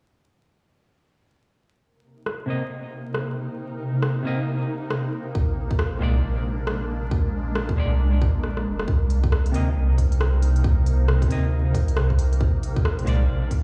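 Vinyl crackle and a large, roomy reverb give this wistful, ghostly future garage excerpt the feel of a big sound system playing in a bare room, with a swung groove. A blurred, warbling granular pad pumps through sustained chords, a breathy wind-like noise texture sits dark in the background, and a clean, bright semi-hollow guitar adds filtered, tape-echoed accompaniment, while an organic electronic kit keeps smooth hats and rim clicks. At 5.3 seconds a round, deep dub sub bass and a tight, up-front kick arrive, and a drum fill at 8.4 seconds leads into the second section.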